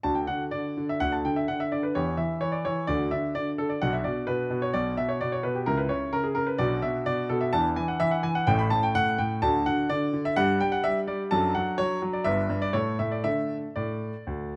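A brilliant concert grand piano opens alone in this short cut from a classical-period sonatina, its cheerful, graceful phrases moving with a flexible rubato feel in 4/4. The solo piano sits up front with a deep bass and short sustain, its harmony passing from D through Bm and E9 to A before settling back toward D. Close, detailed miking and light reverb keep the natural tone clear across the 14.6 seconds.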